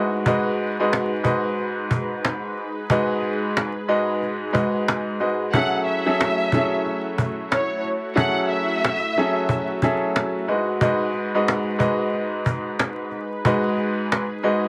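Boom-bap hip-hop at 91 BPM with a swung 16th feel sets a reflective, gritty mood in this short cut, as a bright, woody upright piano up front and a thick, detuned sawtooth pad with chorus in the background hold G#m7 and F#m7 chords, a woody, band-limited cajon with faint snares keeps time, and a lush, expressive bowed violin section with vibrato, portamento and digital delay carries the melody from 5.5 to 9.7 seconds, all set in a small room under vinyl crackle.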